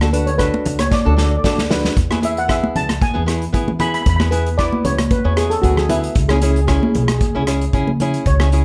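A lightly swung 4/4 calypso groove at 114 BPM opens this festive, sunny excerpt, with an unplugged drum kit of punchy kick, medium-tuned snare, rim click and hi-hat played with bundle sticks, plus a drum fill from 0.9 to 2.0 seconds, while close, dry, high-tuned congas ring over a woody pizzicato upright bass. A small fingerpicked nylon-string guitar fills in the harmony as the chords move from D to E and then C#m at 6.2 seconds. From 0.1 seconds a mellow lead steel pan, struck with soft rubber sticks, takes a shimmering, metallic solo coloured by slapback echo and plate reverb, all in a lightly reverberant room.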